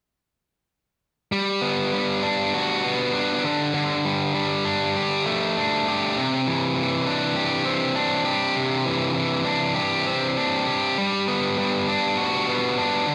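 A bright, overdriven electric guitar sits up front, playing a picked, jangly riff from 1.3 seconds until 13.1 seconds. This short rock passage, cut from a longer piece, moves in a straight 4/4 with a carefree mood. The guitar's range runs from C3 to G4, and its chords move from Gmaj7 through Dsus4 and Cadd9 before returning to Gmaj7 at 11.0 seconds. Light reverb gives the solo guitar a touch of room around its overdriven tone. The tuning sits slightly above standard, at A4 = 441 Hz.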